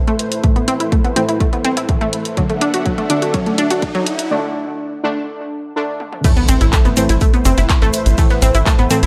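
A lush, nasal unison pad, detuned sawtooth brass stabs under a filter sweep, and a faint warbling tape-like pad open this dark, cinematic excerpt of melodic techno in A dorian at 124 BPM. A round analog pluck soon spins arpeggios up front, with chorus and analog delay, as a punchy layered kick and a house kit of bright hats, handclaps, toms and crash cymbal drive the build-up over Amadd9 and D chords. A faint riser creeps in at 1.1 seconds, and drum fills and a break lead to the drop at 6.2 seconds, where its impact lands. A tight, wave-folded sequencer bass pumps against the kick from 6.5 seconds, while a grainy tube shaker and a very quiet, overdriven soul sampler-style kit of snare, hi-hat and tambourine sit far back. The mix is dry and gritty, with light digital ambience, and the pad, stabs, pluck and bass all breathe with sidechain pumping.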